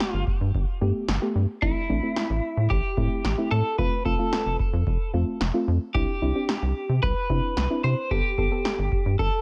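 A steady, straight 4/4 pulse at 111 BPM drives this upbeat, bright synth-pop excerpt in C major, set by a dry electro analog drum machine with a deep kick and a punchy snare placed up front. Underneath, a rubbery square bass with a hollow, bouncy character and a resonant filter pluck ranges from F1 to C3, entering at 0.1 seconds and sitting as the loudest part of the mix. A soft, round pluck fills in the accompaniment between A3 and A4, its detuned tone thickened by chorus and a noise layer. On top, an electric guitar at the edge of break-up carries the melody between E4 and C5, picked and compressed, colored by harmonic tremolo and digital delay. The chords move from Gadd9 to Am, F and Cadd9 before returning to Gadd9 at 8.1 seconds, and the whole passage sounds close and dry with little reverb.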